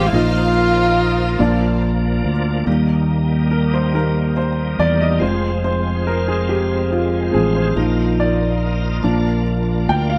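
Soulful and jubilant, this slow gospel excerpt in 6/8 at 47 BPM opens with a breathy, scooped tenor saxophone and a lush, distant string section sharing a brief melody over a fingered electric bass up front, a bright tonewheel organ with key click, chorus vibrato and a slow rotary speaker, and an accompanying upright piano. At 2.7 seconds the woody upright piano, with its intimate action noise, takes a solo through to the end, while a mellow French horn section holds sustained chords in the background. The band plays live in one room with light reverb, moving from Bbsus4 and Bb to Eb and Fm before returning to Bbsus4 and Bb.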